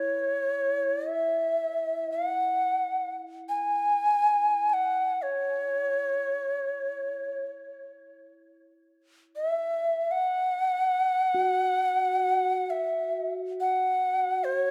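The piece opens with a mellow cedar flute in the Native American style and a quartz singing bowl sounding together, drifting in free time with a spacious, meditative mood. The flute carries the melody up front. Its woody, airy tone is marked by vibrato, tongued notes with a chiff, lifted highs and a slightly unsteady quality, all wrapped in plate reverb and delay. Beneath it, the bowl adds a pure, ringing texture struck with a felt mallet, its slow beating set well back in the mix with its own plate reverb. The bowl falls away at 4.7 seconds, leaving the flute alone, then returns at 11.3 seconds to ring beneath the flute until the end. A wet small-room ambience surrounds this brief passage, cut from a longer world meditation work.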